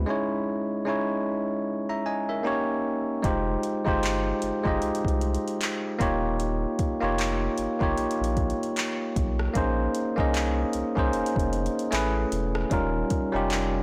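A bell-like, bright tine electric piano and a deep, saturated sine sub bass open this tender, smooth contemporary R&B excerpt at 76 BPM with a swung feel, moving through lush chords such as Dbmadd9, Fm9 and Bbm11 before an electronic drum kit of soft kick, metallic hats, handclaps and rim clicks enters at 3.2 seconds, all set in light digital reverb within a blown-out, overdriven recording that ends on a brief electric piano fill at 13.5 seconds.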